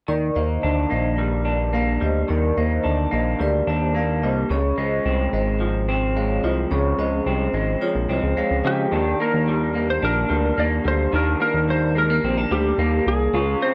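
This hazy, laid-back indie pop excerpt in Eb major opens at 0.1 s with three parts together: a chorused synth bass, an electric guitar through a small old amp, and a vibraphone played with soft mallets. The bass sits up front with a retro, glossy pulse-and-sawtooth tone that evolves over sustained notes. The twangy, slightly broken-up picked guitar shares the foreground with a lo-fi edge, treated with subtle chorus and a vibrato effect. Above them the ringing, airy vibraphone carries a second line with motor vibrato, lush chorus and tape echo, over chords moving from Ebmaj7 to Dbmaj7, before it stops near 8.8 s. At 8.7 s a clean lap steel guitar takes the melody, its compressed, fingered slide tone warm and coloured by analog chorus as the harmony returns to Ebmaj7. The straight 4/4 groove moves at 109 BPM, and the dry, gritty hardware recording carries only light reverb.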